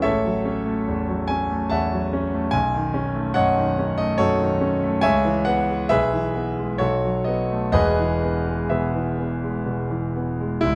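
Classical romantic character piece for solo piano, this short passage taken from a longer work is passionate and lyrical, unfolding in 3/4 at 61-75 BPM with a freely breathing rubato in E major. A concert grand carries everything on its own, sounding warm and natural, with a deep bass that reaches down to C#1 while the upper register extends to A5. The harmony moves from F#m7/A through B9 to C#m7, then passes through E/B and B7 before settling on E at 7.7 seconds. Close, detailed miking keeps the piano up front, while a moderate concert hall reverb with a 2.0-second decay adds a gentle halo around each phrase. The fragment ends at 10.8 seconds, just after that arrival on the home chord.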